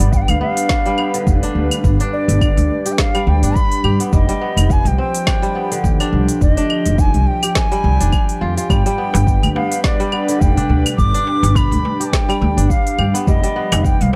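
This earthy, hypnotic organic downtempo excerpt at 105 BPM opens with a pure, bright bansuri melody with tape echo over an airy, chorused pad that pumps with the sidechain, ringing fingerpicked kora arpeggios through digital delay, a growly pizzicato upright bass up front, and a swung afro-pop kit of cabasa, claves, crisp hats and woody snare driven by a deep electronic kick, while a soft-handed metal-shell darbuka slips into the background at 9.1 seconds, set in a dark small-room production.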